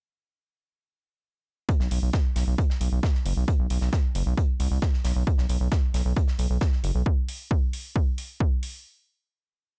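A straight 4/4 pulse at 134 BPM drives this dark and hypnotic peak-time techno piece, tuned to A4 = 442 Hz. The punchy electronic kick sits up front with a four-on-the-floor pattern from 1.7 seconds, alongside a quieter, high-pass filtered acoustic kit of hi-hat and medium-tuned snare: a small-room looped breakbeat with edits that drops out at 6.9 seconds. They are soon joined by metallic, open electronic hi-hats that pump with sidechain. The gritty, aggressive synth bass gallops in sixteenth notes between F#1 and C2, blending square, sawtooth and sine tones with oscillator sync, a plucky filter and a moving notch. That bass is saturated, up front and pumping with sidechain. The whole groove sounds dry and raw, like a hardware recording with little reverb.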